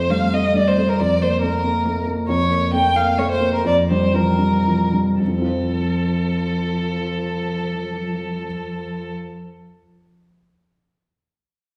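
Lively and graceful, this classical-period movement for piano quartet in 3/4 moves with rubato, a smooth, vibrato-rich violin carrying the melody up front over an open, long-sustaining baby grand piano, while a softly attacked, expressive cello adds a second line with portamento in the background, the pace easing from 1.6 to 5.2 seconds, the whole heard from further back in a wet recital hall as a passage cut from a longer piece.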